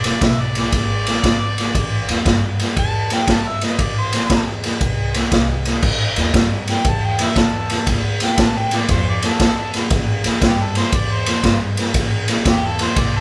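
A brooding, smoky electric blues shuffle in A minor at 118 BPM opens with a mellow, overdriven harmonica playing the melody with light vibrato, over a woody, thumpy pizzicato upright bass sitting in the background and a gritty garage drum kit up front working crash, ride, snare and a boomy kick. The harmony moves from a rootless E7 to Am7, and at 5.8 seconds the vintage, jazz-styled harmonica takes a solo over A5, Dm and Am7. The band sounds like it is playing live together in one room with light reverb, the saturated drums having a rolled-off top, and the clip is cut from a longer piece.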